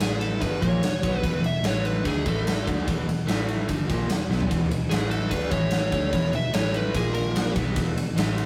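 Raunchy and gritty, this short cut from a longer blues rock and southern rock power-trio piece charges along at 147 BPM in straight 4/4, with a dark, fuzzy distorted lead guitar soloing until 7.5 seconds over a bright, double-tracked crunchy overdriven rhythm guitar riff bathed in spring reverb, a round, foam-muted vintage bass, and an up-front big rock drum kit of punchy kick, snare, ride and toms that throws in a fill at 4.3 seconds, all moving mostly between A5 and E5 chords in a rough rehearsal-room sound with warm saturated grit and moderate reverb.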